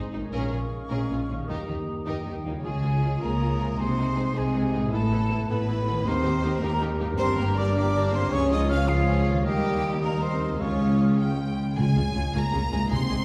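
Strings, woodwinds, horns and harp sound together from the opening moments of this adventurous, heroic cinematic excerpt in 6/8 at 105 BPM, set in Db lydian, with a build-up over the first 2.6 seconds. A lush bowed violin section carries the melody in the background, while a second, richer violin section, a bright silver flute with airy vibrato, a mellow, distant cor anglais and a smooth-topped clarinet add second lines. Violas and a French horn section supply accompaniment and sustained chords, a concert harp rings out fingerpicked arpeggios, and cellos and a clear, focused double bass section hold down the bass. The harmony moves through Bbm7, Eb, Db, Ab/C, Asus2, Gm and back between Db and Eb. The flute drops out at 11.2 seconds, and timpani played with medium mallets sounds a Db at 11.8 seconds as the passage continues. A wet recital hall reverb places the ensemble further back in the room.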